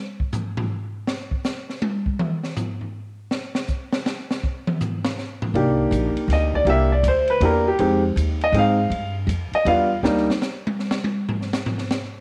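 Swinging and late-night, this jazz piano trio fragment moves at 160 BPM in a swung 3/4 in C minor, tuned slightly flat to A4 = 437 Hz. The acoustic drum kit opens alone at 0.2 seconds with a solo of dark cymbals, a high-tuned snare, a boomy kick, toms and hi-hat, all rolled off at the top. At 5.5 seconds the vintage-toned grand piano takes a smooth, up-front solo over Cm7, C7, Fm7, G7(no3) and Ebmaj7, joined by a woody, thumpy pizzicato upright bass until 10.3 seconds, when the drums carry on alone in a small, echoing room.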